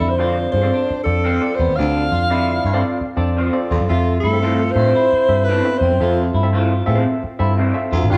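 A swung 4/4 soul groove, danceable and warm, puts a round, foam-muted picked electric bass up front beneath a barky, lightly overdriven tine electric piano and two slightly broken-up, lo-fi electric guitars through a small old amp, one dark and playing a riff and one twangy with phaser adding stabs, while a distant, gritty baritone saxophone riff sits in the background and a breathy, scooped alto saxophone carries the jazz-style melody out in front, joined at 3.9 s by a metallic, ringing vibraphone second line as the harmony moves from Dm7 to Fmaj7 in a live stone-room sound.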